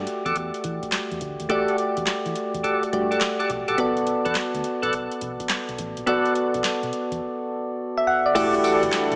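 Swung sixteenths drive this bouncy, confident new jack swing excerpt, where a booming analog drum machine with a deep kick, crisp snare, handclaps, tambourine, crash and metallic hats cuts out from 7.2 to 8.4 seconds beneath mellow, chorused electric-piano-like synth keys, a dark, round, muted fingered bass and fat, lightly overdriven tonewheel organ stabs through a slow rotary speaker, before a floating, bowed string section enters at 8.4 seconds, heard in a moderate echo chamber with a small-speaker sound.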